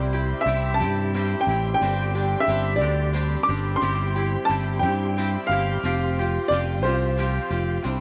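A smooth, vintage-toned grand piano carries the melody in this hopeful, nostalgic folk rock and heartland rock excerpt in C major, moving at 60 BPM in a straight 6/8 and falling silent at 7.5 s. Beneath it, a bright picked acoustic archtop guitar with audible finger squeak, a clean, compressed, twangy electric guitar riff bathed in lush chorus, and a direct, amped fingered electric bass sitting up front fill out the band. A soft, flute-like tonewheel organ with slow rotary speaker and chorus vibrato holds sustained chords in the background, and a moderate echo chamber reverb lends the whole a roomy glow over the chords C, Gsus4, C/G and Fsus2.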